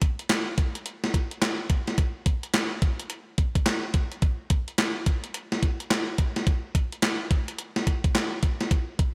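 A swung sixteenth-note groove in 4/4 at 107 BPM drives this flirty, bouncy R&B fragment, carried entirely by a gated 80s digital drum machine playing handclaps, hi-hat, kick drum and snare drum through all 9.1 seconds. The sampler-style kit sits up front with a thumpy kick and a gated reverb snare, its sound tape-warm and re-recorded in a small room, all under a light reverb.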